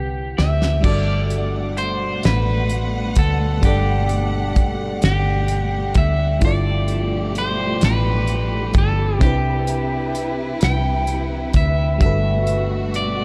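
In a slow, straight six-eight sway, this tender, intimate R&B fragment opens on a short drum fill before a cloth-damped, thuddy kit with a fat snare and dark cymbals settles in, while a round, foam-muted vintage bass sits up front, a glassy FM electric piano with a bell-like attack and chorus lays down jazzy extended chords, a slightly broken-up, twangy electric guitar carries the melody, and a lush, distant string section with vibrato and portamento enters at 0.8 s, all floating in a huge, dreamy reverb.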